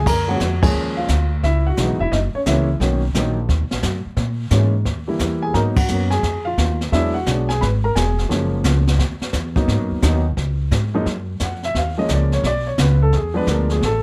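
A brisk 174 BPM swing in 4/4 drives this sophisticated jazz piano trio in F# major: a woody pizzicato upright bass with steel strings sits up front beneath a natural, short-sustained baby grand piano carrying the melody, while a dark-cymbaled brush kit with a boomy kick and rolled-off top adds small-room texture, the whole band hitting accents at 0.6 and 5.7 seconds before the piano takes a solo from 11.1 seconds in this close, dry, detailed recording cut from a longer piece.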